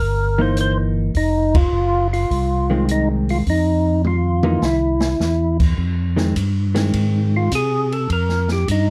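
Soulful and bluesy, this soul jazz organ trio excerpt swings in 4/4, cut from a longer piece. A fat, lightly overdriven tonewheel organ carries the melody with third-harmonic percussion, vibrato and a slow rotary speaker, while a second, clean tonewheel organ with key click and the same slow rotary handles the bass line. A dark, compressed hollow-body electric guitar, picked cleanly, adds accompaniment until 7.5 seconds. An acoustic drum kit in a small room brings dark cymbals, a medium-tuned snare and a boomy kick, with a band accent early on and a drum fill at 4.0 seconds. The harmony moves from a C7#9 through Fm7 and C before returning to Fm7 as the organ takes a solo at 5.8 seconds. The production is warm and dark with light reverb, the organs and guitar sitting up front.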